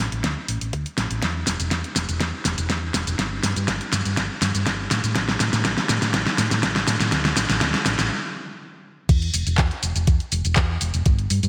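A straight 4/4 nu-disco groove at 122 BPM, sleek and sensual. An up-front, layered pop drum kit with a fat snare, warm hi-hat, shaker, handclaps and crash runs a fill through the build-up, while an overdriven, thumpy electronic kick is high-passed and a dark, round hollow-body bass is colored by tube saturation. Everything halts at 8.1 s for a brief stop before the drop lands at 9.1 s, all bathed in a lush hall reverb and bright 1980s-style digital sheen in this short fragment of a longer piece.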